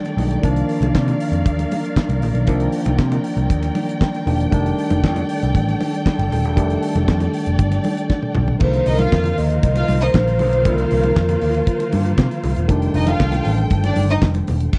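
A driving, glamorous disco groove at 118 BPM in C dorian opens with a damped 70s drum kit, fat-snared and tight-kicked with handclaps, alongside a barky tine electric piano, dark symphonic strings holding sustained chords, background congas, and a round, punchy picked bass with tube saturation, all moving between Cm11 and F13. After a drum fill, a mellow vibraphone played with soft mallets carries the melody from 8.6 to 11.9 seconds while a lush studio violin section adds a second line from 8.9 seconds. The sound is dry and close in the manner of a 1970s studio recording, and the passage is cut from a longer piece.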